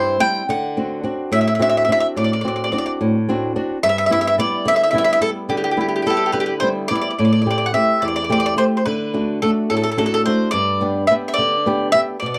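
A round, double-strung mandolin carries the melody up front over a fingerpicked flamenco guitar in this lively, romantic Italian folk piece, cut from a longer performance and moving at 72 BPM in 6/8 in G major. The guitar's accompaniment spans from its low register up into the mandolin's range, passing through D7 and G6 before a new passage at 7.2 seconds shifts to Am7, D and then G. Both acoustic instruments sit close in a small, moderately reverberant room, with a dark and warm production.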